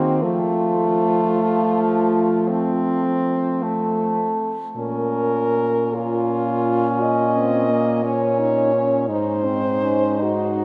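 Four French horns sound together from the first moment of this short cut from a longer classical piece, a yearning, melancholic passage in Bb minor that moves in a rubato 12/8 at about 50-59 BPM: a warm, close lead melody with light vibrato and a soft attack; a clear, distant second line; an inner accompaniment horn with a smooth top; and a mellow bass horn, all set in a wet cathedral reverb as the harmony passes from F to Bb minor to Ab.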